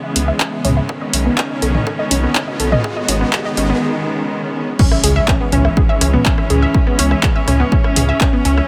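Melodic techno in C# minor at 123 BPM, this dark, melancholic clip from a longer piece builds for its first 4.8 seconds before dropping into its second half, moving through C#m, Badd9 and G#m before returning to C#m. A deep, rumbling detuned saw bass sits up front with a beating, sawtooth edge and sidechain pumping, joined by a punchy, tape-flavoured electronic kick with a high-pass filter and an analog drum machine supplying crash, handclaps, hi-hat, rim click and toms, its hats, toms and cymbals pumping against the sidechain. Over this, a lush unison pluck spins detuned sawtooth arpeggios through digital delay, while a rich, biting studio string section holds close, bowed chords with vibrato, pumping and low-pass filtered. Beneath them a cloudy, evolving granular pad blurs into the background, and a tense, string-like drone murmurs very quietly until 3.8 seconds. A faint electronic riser swells through the break into an impact at the drop, all set in light reverb and digital ambience.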